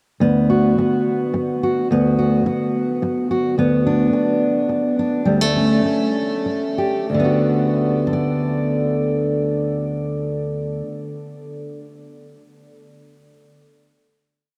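Peaceful and nostalgic, this short acoustic folk piece in D major and 3/4 is a solo for dark, full-bodied fingerpicked steel-string dreadnought guitar with a slap groove, played up front at 93-108 BPM, slowing from 3.6 to 7.1 seconds before a final D6 chord rings out at 7.1 seconds into a huge, echoing reverb.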